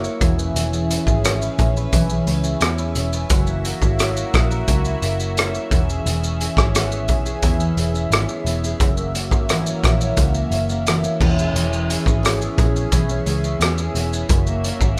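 A straight 4/4 pulse at 87 BPM carries this sunny, nostalgic indie and bedroom pop excerpt, where a gritty, saturated garage drum kit sits up front with a punchy kick, dark cymbals, hi-hat, rim click and shaker in a small pumping room, a round, foam-muted picked electric bass adds amped low end, a full-bodied jumbo steel-string acoustic guitar picks accompaniment under subtle chorus and vibrato, and a swirling, detuned sawtooth analog pad sustains bright phased chords as the harmony alternates between E6 and F#7 across 15.0 seconds in a rough home demo mix.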